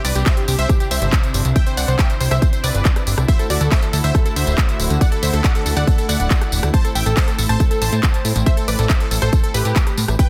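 A punchy, up-front electronic kick enters at 0.3 s and drives this euphoric, soaring uplifting trance excerpt at 139 BPM in a straight 4/4, over a house kit of handclaps, crisp hi-hats, rim clicks and tambourine in a small room ambience. An airy, detuned supersaw stab carries the melody with delay and sidechain pumping, joined by a lush, decaying unison pluck playing a second line in the background. A funky sawtooth-and-square analog bass with a moving notch, and a dark, reedy, distant bowed string section sustaining Cadd9, Dadd9 and Am chords, pump along beneath in a dense, heavily limited modern master.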